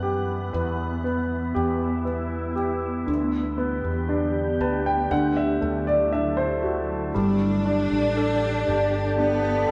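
A wet stone-room reverb frames this short cut from a tender, hopeful pop ballad in G major at 59 BPM, where an intimate, up-front concert grand piano with audible action noise plays accompaniment and a fill from 4.1 to 7.2 seconds over a glassy, chorused FM pad holding ethereal sustained chords and a round, punchy fretless electric bass, until a lush, bowed cello section with vibrato enters on a second line at 7.2 seconds over a Gsus2 chord.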